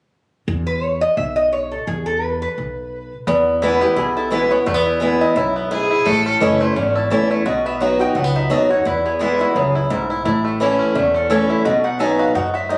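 A woody, thumpy upright bass opens at 0.5 s, joined almost at once by an up-front lap resonator guitar whose mellow, nasal slide melody rides a lively, driving bluegrass pulse at 172 BPM in E major with a light swing. At 3.3 s a twangy, percussive banjo and a boxy, picked old ladder-braced acoustic guitar enter as the music moves through E, A and B, and at 5.7 s a clear, biting fiddle adds a brief, intense second line with light vibrato from a distance. This excerpt of a longer piece sounds as if captured on a phone in the room, with club reverb, compression and a moderate large-studio ambience.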